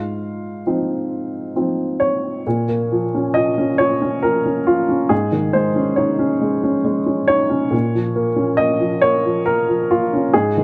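Intimate and reflective, this short neoclassical minimalist piano cut from a longer piece unfolds in Bb minor at a rubato 68 BPM in 3/4, with a solo upright piano, woody, polished and up front with short sustain, moving from Fm7/Ab to Bbm at 2.5 seconds and through Absus4 back to Bbm, captured by close, detailed microphones in light reverb.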